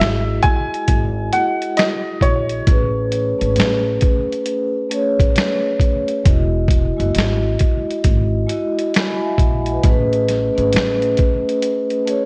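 Worn, warbling cassette tape and light reverb frame this reflective, nostalgic lo-fi hip hop excerpt: a woody, slightly detuned upright piano with slapback echo carries the melody until 4.9 s, while a mellow, airy vibraphone with slow motor vibrato rings through the Emaj9 and Amaj9 chords. A thumpy pizzicato upright bass plays until 11.1 s, and a gritty, compressed, pitched-down sampler-style trip hop kit of finger snaps, hi-hat, kick and snare swings up front.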